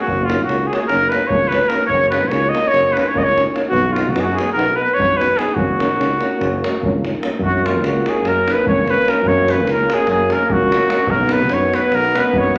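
Wild and exuberant, this Balkan brass band folk excerpt drives along in 9/8 at 294 BPM in F# major, with a soft-attacked cornet up front carrying the melody over a vintage clarinet second line in the background, a very quiet, clear euphonium and a punchy, present trombone on accompaniment, a mellow tuba with light vibrato holding the bass, and a deep, distant davul, all set in a wet large-studio reverb with a faint mains hum as the chords alternate between F# and B across 12.6 seconds.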